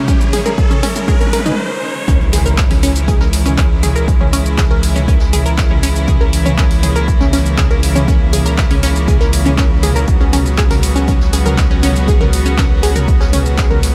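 A light reverb gives this dark, cinematic melodic techno excerpt a close but airy sound, moving at a straight 120 BPM in 4/4 and centred on C# dorian. A rich chamber string section holds soft-attack, sul tasto chords from the opening, floating over a lush, detuned unison pluck that plays arpeggios through a delay, with a filter sweep and a moving notch shaping its sawtooth edge; both breathe with sidechain pumping. The first 2.1 seconds form a build-up, as an electronic riser climbs and a drum fill rolls, and a brief stop follows before the drop. At 2.1 seconds an impact hits, and a round, deep analog bass enters on C#, its wave-folded tone pumping beneath the mix, while a very quiet jazz brush kit adds natural hi-hat and snare in the background. The analog kick sits prominently, re-recorded in a small room alongside the punchy analog drum machine's handclaps, hi-hat, shaker and toms, and the harmony moves from C#m to Bsus2 over C# at 10.1 seconds.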